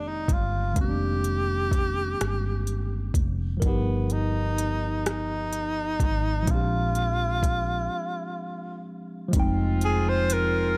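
A breathy, whispered tenor saxophone carries a yearning, sultry jazz-style melody up front in this slow six-eight R&B excerpt in F dorian at 42 BPM, over a worn, slightly out-of-tune tine electric piano, a dark, round fretless bass with ensemble chorus, and an electronic drum kit of soft kick, smooth hats and rim click, moving through Fm11, G7alt and Bb13 to a break at 7.9 seconds before a distant, roomy horn section enters with stabs on Fm7 at 9.3 seconds, all in a dry mix.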